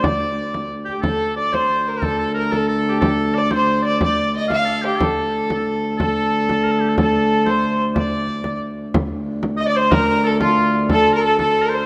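Driving and ancient, this excerpt of a medieval dance in 6/8 carries a reedy, gut-string fiddle melody over a punchy, vibrato-laden folk shawm second line, a woody, ringing viola da gamba drone held on D2, and a deep frame drum struck with soft hands, the whole rough home-demo mix set in a lush hall reverb.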